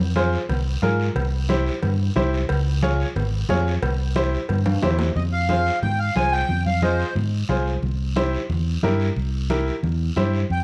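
A dark, roomy studio sound frames this danceable, passionate cumbia excerpt at 180 BPM, where a round, up-front fingered electric bass and a bright, woody, slightly detuned upright piano with audible action noise carry the harmony over damped, thick-skinned congas and a raspy guiro, ringing cowbell and timbales drive the opening until a drum fill at 4.7 s, and a reedy, sweet accordion with light tremolo tuning takes up the melody as the music settles into F minor at 5.2 s.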